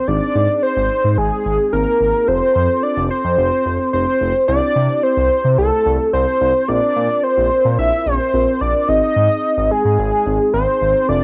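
Over a straight 4/4 pulse, this bright, nostalgic synth-pop fragment, cut from a longer piece, was captured at home on cassette in a wet booth. A thick, bold unison lead with vibrato and a sub octave sits up front, treated with cassette tape and plate reverb, beside a smooth, detuned synth bass that enters at 0.1 s with a moving notch. Further back, a soft, round, warbling FM electric piano with chorus stays dark and vintage, while the harmony moves through Ab, F, C and Bbsus2 before returning to Ab.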